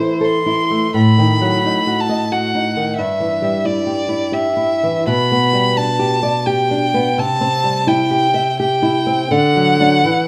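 A single bowed violin carries the yearning melody up front, its tone rich and focused with vibrato, across this melancholic romantic duo excerpt in 3/4, moving with rubato between 76 and 92 BPM. A small-sounding nylon-string guitar, fingerpicked on fresh strings and also up front, supplies the accompaniment across a span from G2 to E5, as the harmony turns from E minor to G major at 5.1 s and rests on D at 9.3 s. A moderate recital-hall reverb surrounds both players.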